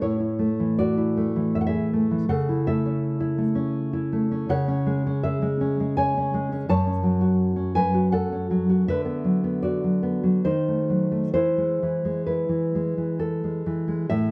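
A solo nylon-string guitar plays this tender, nostalgic romantic excerpt in a rubato 3/4 that drifts between 64 and 86 BPM, its fresh strings sounding full-bodied and thumb-plucked from a deep F#2 up to A5 amid finger squeak, as the harmony moves from A through C#m and F#m to a D#dim7 that settles on E by 11.3 seconds, all captured up front by close, detailed microphones in light reverb.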